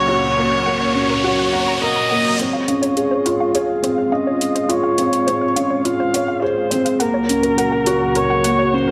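A felt-muted upright piano sits up front in this tender, hopeful piano-and-strings electronica fragment, its soft, boxy riff carrying audible action noise and a tape echo. Alongside it a clear, focused violin sings the melody with vibrato through a low-pass filter, with a filter sweep on the violin across the build-up that runs from 2.4 seconds to the end. A lush, detuned unison pad holds sustained chords with a slow attack and chorus, while a round analog pluck plays arpeggios in the background, coloured by chorus, tape echo and ring modulation. An electronic riser and a filter sweep on the pluck open the piece, and at 2.4 seconds an overdriven electronic hi-hat with metallic hats enters as the harmony moves from Gb/Db to Dbmaj7 and back to Gb/Db at 7.0 seconds. A moderate recital hall reverb adds a touch of small-room ambience, and the piece is cut from a longer work.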